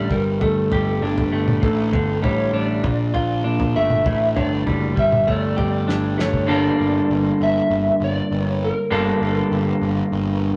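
A straight 4/4 pulse drives this trippy, hypnotic psychedelic rock passage, cut from a longer piece, with a cloth-damped, thuddy drum kit of fat snare, tight kick and toms that plays until a fill closes its part at 6.5 s. Up front, a slightly broken-up electric guitar through a small old amp picks a dark riff beside a round, overdriven fuzz bass, while a fingered electric slide guitar carries the melody over chords that move from Gsus2 through Bbmaj7 and A7sus4, back to Gsus2 and on to Gmadd9. The rough rehearsal-room recording sits in a moderate stone room reverb.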